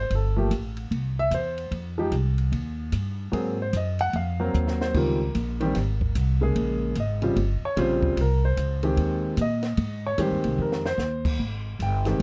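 Jazz piano trio in Ab major at 149 BPM with a swung 4/4 feel, sophisticated and warm, in which an up-front concert grand with deep bass and audible action noise solos over a woody, growly pizzicato upright bass, while a compact cocktail kit with dark cymbals, a high-tuned snare and a punchy kick adds fills at 4.5 and 10.6 seconds, all captured in a dark, warm production with little reverb.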